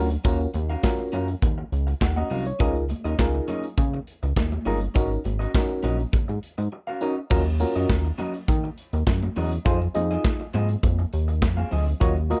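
A glassy, bell-like FM electric piano with a chorus shimmer opens alongside a slightly broken-up electric guitar riff and a glossy, plucky synth bass in this late-night, danceable early-eighties boogie funk cut in Eb dorian at 102 BPM, with a punchy studio drum kit of kick, snare, hi-hat, handclaps and crash arriving at 0.1 seconds. Bright, high-tuned congas sit in the background from 0.6 seconds, while the bass, electric piano and drums stay up front in a dry mix. A brief break at 6.7 seconds leads into a second section over Ebm7 and Fm7 chords before the excerpt cuts off.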